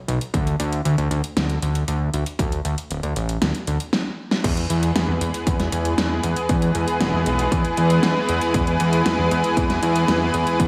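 Nostalgic and uplifting, this synthwave excerpt opens with a fat, detuned sawtooth analog bass with tube saturation, an overdriven pop drum kit with a fat gated-reverb snare, metallic hats and crash cymbal, and a punchy electronic kick, then after a drum fill at 3.9 seconds a lush, bright unison pad with chorus and sidechain pumping enters at 4.4 seconds over a light digital ambience.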